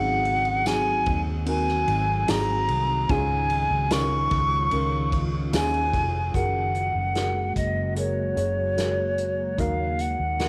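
At a slow 74 BPM in straight 4/4, this tender, hopeful pop ballad moves gently, with an unplugged acoustic drum kit entering at 0.3 seconds on kick, snare, hi-hat and ride, played with bundle sticks and heard from a distance in a roomy studio space with dark cymbals and a tight kick. A pure, hollow concert flute carries the melody up front, close-miked, tongued and played with vibrato, reaching as high as Db6. Beneath it, a felt-muted upright piano gives soft, intimate, boxy accompaniment with audible action noise, while a vintage foam-muted fingered electric bass adds a round, punchy low end. A glassy FM pad with a slow attack and long release sustains ethereal chords in the background through ensemble chorus and its own reverb, and a jingly, close and dry tambourine sits quietly behind the band until 5.7 seconds. The harmony moves from Ab7 to Dbadd9, then shifts at 6.3 seconds into a new section on Gbadd9 before settling on Ebm, all under a light studio reverb in this excerpt from a longer piece.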